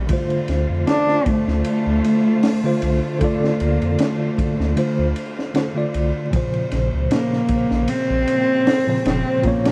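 Dark and brooding, this short trip hop excerpt from a longer piece sits on a loose, lightly swung 4/4 groove. A crunchy, gritty breakbeat kit with a punchy kick, high-tuned snare and dusky cymbals plays under a round sub bass and a bell-like tine electric piano shimmering with tremolo, while a lush string section holds sustained chords in the background. From 0.9 seconds a solo cello carries the melody up front, intimate and bowed with vibrato and a soft attack, trailed by tape echo, as the harmony moves from Dm7 to Bbmadd9 in a rough home-demo mix dusted with vinyl crackle and small-room reverb.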